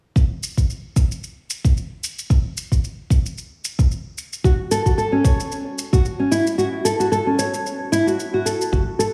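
Organic downtempo with a meditative, mystical air, this short cut from a longer piece sets a deep, tape-toned, layered electronic kick up front beside a produced shaker in a dreamy, reverb-soaked plate space, while a thumb-plucked classical nylon-string guitar enters at 4.4 seconds with low-pass filtered arpeggios through an analog delay, the kick drops out at 6.6 seconds, and a round sine sub bass with sidechain pumping sounds only briefly at 8.7 seconds.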